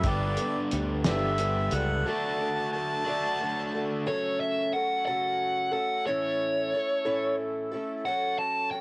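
In a straight 6/8 at 60 BPM, this hopeful, open-road folk rock and heartland rock fragment opens with a mellow, lightly vibrato-touched harmonica solo carrying tape echo over Gadd9 and D, backed by a shimmering, octave-doubled twelve-string acoustic guitar, a bright, double-tracked overdriven electric guitar riff, a very quiet, woody upright piano, punchy fingered bass and a cloth-damped, thuddy drum kit with a fat snare, the drums and bass dropping out by 2.0 seconds, before a dark, smooth overdriven lead guitar takes the melody at 4.1 seconds over F#m and A while the twelve-string carries on, in a dry home recording on cassette.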